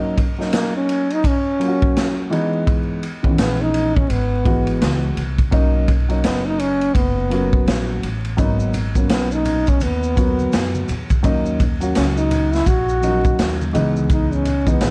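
A mellow, up-front trombone with light vibrato and slapback echo carries the melody over dark baby grand piano chords with audible action noise and punchy vintage drums with a rolled-off top, joined by a woody, growly upright bass at 3.4 s and by bright maracas and congas tucked in the background from 8.4 s, giving this nocturnal, smoky jazz-hop excerpt at 84 BPM a dry, swung feel under a layer of vinyl crackle.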